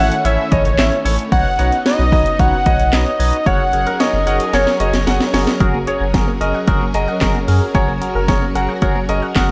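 Synth-pop at 112 BPM in F# major, bright yet wistful, moving from A through Badd9 to F#add9 in a dark, warm production with digital ambience. A fat, nasal analog lead with vibrato and chorus carries the melody until 5.3 s alongside a clear baby grand piano second line, while a barky tine electric piano with phaser, shimmering vintage string-machine violins and a round, deep analog bass fill out the harmony. An overdriven house drum kit with punchy kick, cracking snare, handclaps and hi-hat sits up front and plays a fill from 4.5 s, and a detuned analog pluck enters at 5.6 s with arpeggios in the background.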